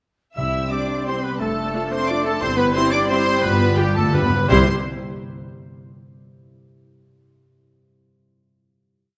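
A lush, vibrato-rich violin section carries the melody of this short, festive orchestral ballroom waltz in C major, moving in 3/4 at 175 BPM with uneven beats and an elegant rubato feel. Doubling the tune an octave apart are a soft-attacked second violin section, an airy, hollow flute section, a clear, distant oboe, a background cello section and a bright trumpet section that adds stabs. Beneath them, a dark clarinet and a gentle bassoon hold sustained chords, while a very quiet viola section and a tight, dusky French horn section add after-beat and sustained chords. The double bass section gives the weightiest sound, with bowed bass notes on the beats, and a concert harp sweeps through ringing, fingerpicked arpeggios. Round, calf-headed timpani mark single bass strokes and roll through a fill from 3.4 s into the closing C chord, where the harp rings on alone until 5.6 s in a reverberant recital-hall space.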